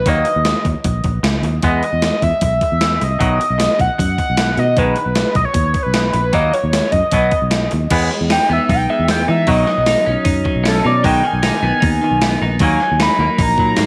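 A screaming, saturated synth lead opens this upbeat, jangly indie rock excerpt in E lydian at 153 BPM, its detuned sawtooth and square-wave tone carrying the melody up front with chorus, phaser, tape echo and vibrato. Beneath it, a bright, picked overdriven electric guitar plays a riff in the background, and a dark, round fingered bass, foam-muted and heard both direct and amped, holds down the low end. A gated 80s digital drum machine arrives almost at once, with a thumpy kick, a gated-reverb snare, hi-hat and crash cymbal, sounding sampler-style and tape-toned, as if re-recorded in a large room. A break comes at 1.4 seconds, and the chords move through D#m, Emaj7, B and a rootless G#m/B. At 7.9 seconds the synth lead takes a solo while a second biting overdriven guitar joins with its own riff, colored by analog chorus and tape echo, as the harmony shifts to Emaj7, Badd9 and back to D#m. 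The mix sits in light reverb and digital ambience, giving the guitar-like lead and up-front drums an upbeat sheen.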